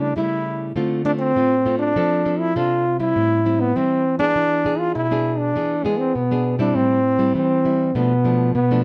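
A nostalgic, yearning samba fragment, in which a punchy, forceful trombone carries the melody in a jazz style, its scooped notes close-miked and up front. A fingerpicked classical nylon-string guitar sits equally forward, its acoustic accompaniment moving through a chord sequence that settles on E7 at 4.4 seconds before returning to Am7. The dark production wraps both parts in a moderate studio ambience.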